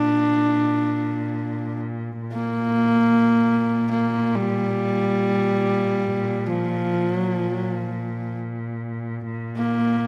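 Close, detailed microphones catch every grain of this short Mongolian folk passage, set in a recital hall with a moderate reverb that lets the notes bloom for about 1.5 seconds. In free time and a Bb gong mode, the music carries a proud, galloping spirit, cut from a longer piece and running just over 10 seconds. A single bowed horsehead fiddle sits up front with the melody, its horsehair strings giving a biting, husky, earthy voice that glides between pitches with portamento across its range from F3 to D4. Beneath it, one bowed cello holds a steady drone on Bb2, warm, smooth and even, with vibrato and a smooth top. The cello stays well behind the fiddle in level, so the fiddle's rugged, intimate tone dominates from the first second to the last.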